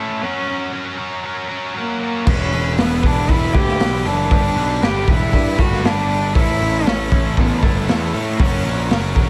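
A bowed, reedy cello carries the melody over a bright, double-tracked high-gain guitar riff from the opening of this dark, cathartic quiet-loud alternative rock fragment at 118 BPM, and at 2.3 seconds a growly fuzz bass and a boomy, saturated garage drum kit with dark cymbals join as the chords move through F#, Em, G and A in a room with little reverb.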